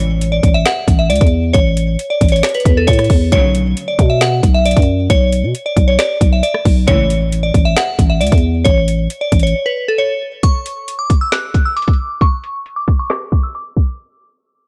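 Melancholic and eerie, this half-time trap excerpt at 135 BPM sets a glassy, crystalline FM bell melody with chorus, tremolo and digital delay over a growling 808-style bass, a trap kit with a hard-clipped kick, woody snare, metallic hats, finger snaps and rim clicks roughened by vintage 12-bit sampler grit, and brief lush bowed string stabs on A and Bmadd9, before the bass drops out at 9.5 seconds for a break and a filter sweep carries the dark, dry production from 10.4 seconds.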